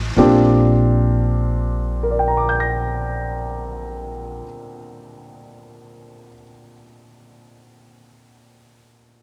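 Romantic and intimate, this brief jazz fragment from a longer piece moves at a slow 33 BPM in 4/4 with a swung eighth-note feel in Bb major, tuned to A4 = 441 Hz, as a smooth, vintage grand piano sits up front on a Bb69 chord across a broad register while a woody, thumpy pizzicato upright bass on steel strings supports it until 4.4 seconds, the whole set in a dark production with light reverb.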